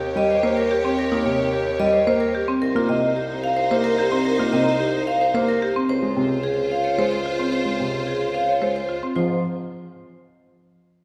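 Hard-mallet vibraphone leads this short cut from a longer piece of minimalist classical pattern music, its metallic, ringing melody carrying a medium motor vibrato and a boxy small-room color. At 110 BPM in 3/4 with a straight feel, the mood is propulsive and bright, moving through Eb7, Cm7 and Dbmaj7 before the harmony drops away at 9.2 seconds. A lush, focused violin section holds sustained chords with vibrato until 9.0 seconds, while a solo bassoon with light vibrato supplies a classical-style bass line. A concert grand piano with deep bass fills in accompaniment from 0.2 seconds, and a woody, airy marimba with padauk bars enters at 0.4 seconds with percussive hard-mallet arpeggios. The whole ensemble sits in a wet scoring-stage reverb, recorded in a church or concert hall.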